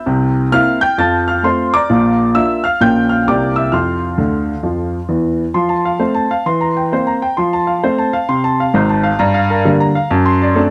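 Stride piano jazz in F major, this short cut from a longer piece swings at a brisk 132 BPM in 4/4, with a 62% swing on the eighth notes and a playful, swinging mood. A single grand piano carries the whole passage, reaching from a deep Ab1 up to A6, with a worn, open tone and long sustain placed up front. Close, detailed microphones and light reverb give the instrument an intimate, vivid presence. The harmony starts on C7, settles on F and moves through Bb and Bbm before a piano fill from 4.2 to 5.5 seconds leads into the second section. That later passage returns to F, passes through C7/E and Gm7, and the cut closes on D7/F#.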